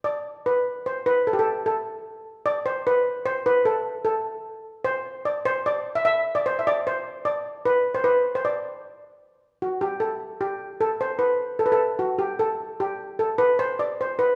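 A shimmering, metallic double-seconds steel pan, struck with medium rubber sticks, plays alone and up front through this festive, rustic medieval-style fragment in a straight triple metre, its airy tone bathed in a wet recital-hall reverb as the tune moves into a new section at 9.6 seconds.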